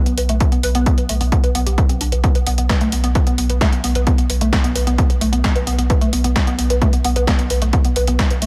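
A woody, wave-folded pluck riff, dark and percussive with overdrive, ensemble chorus, tape echo and sidechain pumping, drives this relentless, industrial peak-time techno excerpt at 131 BPM in straight 4/4, over a deep, saturated sine sub bass on B1, a punchy analog drum machine's tape-warm snare and pumping hi-hats, and an up-front layered electronic kick entering at 0.4 seconds, all set in digital ambience.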